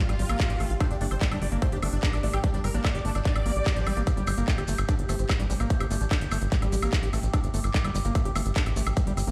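Heard as if through a big sound system in a bare stone room, this cut from a longer psychedelic trance track in G minor drives at 147 BPM with an intense, alien mood, built on a punchy, up-front electronic kick, a crisp drum kit of handclaps, hi-hat and woodblock, and a tight, tube-saturated sequencer bass. A squelchy, distorted acid bass riff with sampler grit and dub echo pumps under a huge, thick supersaw melody that sounds only until 4.0 s, while a wave-folded drone with moving overtones sits in the background under chorus and phaser. Grainy maracas come in at 4.1 s, and a juicy, very quiet blip pluck surfaces briefly at 5.1 s.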